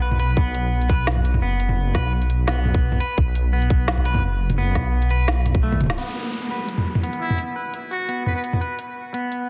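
A bright, picked clean electric guitar plays arpeggios roughened by vintage sampler grit, low-pass filtering and dub echo over a deep, rumbling, saturated detuned saw bass, a tight, up-front electronic kick and a crisp, woody-snared electronic kit in this dark, heavy half-time drum and bass piece; the bass stops at 6.0 seconds as a downlifter sounds and a filter sweep begins on the guitar, and a buzzy, breathy metal-muted trumpet adds a short, whispered jazz solo with delay at 7.2 seconds.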